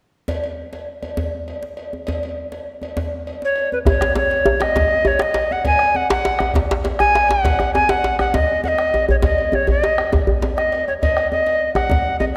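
A festive, earthy, straight 12/8 pulse at 134 BPM in dotted quarters opens this West African traditional drum-ensemble excerpt with a metallic, distant cowbell and a deep, dry djembe at 0.3 s, before an airy, woody tenor recorder with vibrato, tongued chiff and rolled-off highs takes the melody up front at 3.4 s, and a round, close bombo and a tight, cracking second djembe played with soft hands join at 3.9 s, all set in a lush concert-hall reverb.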